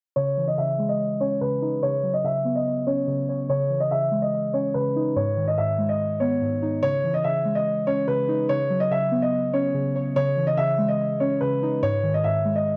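A dark, boxy concert grand piano sits up front with a mellow melody in this tense, menacing half-time hip hop fragment, cut from a longer piece. Muted, felt-like synth keys with a soft sawtooth edge, a noise layer and chorus play the accompaniment beneath it, cycling through C#madd9, Bsus2 and G#m chords. The dry, gritty hardware sound carries a light reverb and a low-pass filter, with a filter sweep running through the first section until 6.8 seconds.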